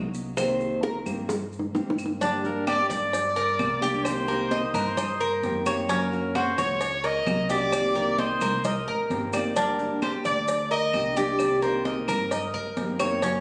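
Sultry and nostalgic, this Cuban son and guajira passage opens with a metallic, double-strung tres picking arpeggios up front over full-bodied, fingerpicked nylon-string guitar with audible finger squeak and a dark, growly pizzicato upright bass, with a drum fill leading into the next section at 2.2 seconds. A distant, punchy trumpet with vibrato carries the melody from 2.4 seconds, while background percussion of ringing, high-tuned congas, round, low-tuned bongos and cowbell, woody claves and grainy maracas fills out the groove. Moderate plate reverb colours the whole, and the sound carries the character of a phone recording made in the room.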